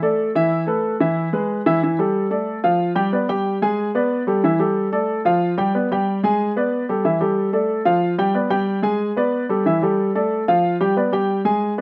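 Dry and up front with little reverb, this short cut from a longer Latin piece features a solo baby grand piano whose worn, present tone and long sustain drive a fiery, danceable feel, moving from a brief opening into a repeating A5, Dm, G and Gadd9 cycle from 1.8 seconds onward.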